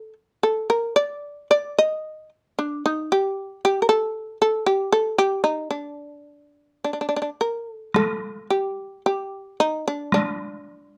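Japanese traditional chamber music in a calm, austere mood, this brief excerpt unfolds with a free, rubato feel in duple metre. A mellow, buzzing, plectrum-plucked fretless shamisen carries the melody throughout, up front and powerful under close, detailed microphones with light reverb. At 7.9 seconds, as the second section begins, solo taiko drums struck with hard sticks join from a distant, roomy space and sound until 10.4 seconds.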